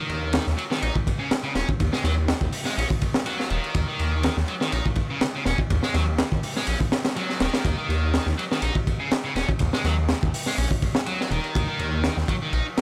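A lightly swung breakbeat groove in 4/4 drives this short, energetic cut from a longer breaks track, its crunchy drum kit of kick, snare, hi-hat and ride sitting up front with a punchy kick, a high-tuned snare and dark cymbals. The kit sounds acoustic and studio-recorded, yet saturated and gritty, with a rolled-off top that keeps it smooth. Beneath it, a phased, detuned saw bass runs in unison voices blended with a sine layer, thick and swirling, its fast attack and sustained notes giving a mellow yet saturated weight in the low register. A distorted electric guitar plays a picked, double-tracked riff from the start, bright and overdriven, roughened by vintage 12-bit sampler grit and trailed by a digital delay, though it sits lower in the mix than the bass and drums. All three parts play throughout the roughly 12.8 seconds in a single raw section, and the dry sound, with little reverb, keeps the whole thing close and immediate.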